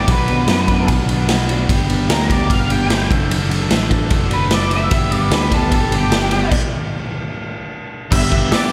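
An octave-fuzz lead guitar, dark and distorted with slapback echo, solos through this upbeat, carefree indie rock excerpt in G major at 149 BPM, backed by a biting overdriven guitar riff, a twangy, slightly broken-up guitar with analog chorus through a small old amp, a growly picked bass and a punchy, gritty garage drum kit, all in a lush hall for a big arena sound, moving from Bm through G and D/F# until a stop from 6.5 to 8.1 seconds before landing back on G.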